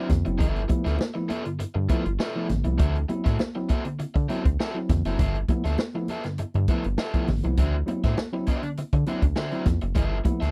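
A punchy, up-front acoustic drum kit with a medium-tuned snare drives this energetic, strutting funk excerpt at 101 BPM in a straight 4/4, joined by a deep, round analog bass with a fast, plucky filter attack and a dark, sustained tone. A tine electric piano plays clean stabs, while an overdriven semi-hollow guitar adds picked accompaniment over chords alternating between G13 and D9. High-tuned, ringing congas sit in the background, and the whole excerpt has a dry, close 1970s studio sound tuned slightly flat to A4 = 437 Hz.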